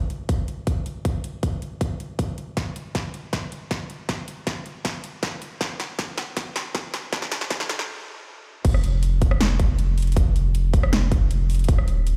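The saturated sub bass dominates once it lands at 8.6 seconds, a deep, thick sine tone with a fast attack, held up front and pumping against the sidechain through the drop. This short future bass cut, lush and dreamy in mood and moving in a half-time feel, spends its opening seconds on a build-up under a filter sweep. An electronic kick drum, punchy and layered, sits up front from 0.3 seconds, while a big-room dance drum kit adds crash cymbal, metallic hi-hats, rim click and a punchy snare, with its hats, snare and cymbals high-passed. A drum fill runs from 2.6 to 7.9 seconds before a brief stop clears the air ahead of the drop. The mix sounds as if played on a big sound system in a bare room, pairing large studio reverb with a high-pass filter.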